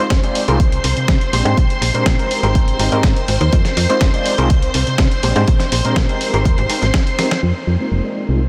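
Filtered disco house with a funky, nostalgic mood, this short excerpt pairs a reedy, overdriven electric piano, shimmering with fast tremolo and phaser, with lush, vintage string-machine chords thickened by ensemble chorus, both pumping under sidechain and softened by low-pass filtering. A snappy FM bass with a metallic attack sits up front beside a punchy, layered electronic kick, while a dusty sampler-style kit adds filtered, pumping hi-hats and a gritty, compressed snare. The mix floats in a dreamy wash of huge ambient reverb, and after a drum fill at 7.2 seconds, a filter sweep carries the closing stretch from 7.4 seconds.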